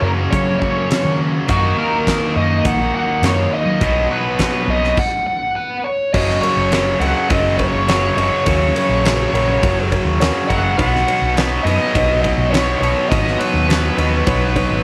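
Classic rock at a confident, driving 103 BPM in straight 4/4, where a smooth overdriven lead guitar sings its wah-tinged melody over riffs from a cranked stack guitar and a tight distorted guitar, a round, punchy fingered bass and a huge arena drum kit with a fat snare and bright cymbals, all breaking for a stop between 5.0 and 6.1 seconds before settling into F# major, where a woody, slightly detuned upright piano joins quietly in the background.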